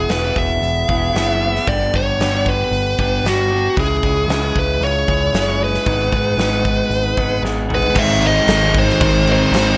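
A straight 4/4 pulse drives this restless, cathartic stretch of quiet-loud alternative rock, cut from a longer piece. A dark, high-gain lead guitar sits up front with the melody, heavy with distortion and slapback echo, while a bright, slightly broken-up electric guitar through a small old amp picks lo-fi arpeggios, also with slapback echo, until 7.9 seconds. Beneath them, a growling picked bass with overdrive and a huge arena drum kit, with its fat snare, punchy kick, crash, hi-hat and toms, give a big, natural weight, and a drum fill pushes into the second section at 8.0 seconds. There three riffing guitars pile in behind the lead: a double-tracked fuzz guitar, a compressed overdriven guitar and a thick fuzz guitar. The chords move from E through G, C#m and G#m before landing on G#, all set in light reverb and small room ambience.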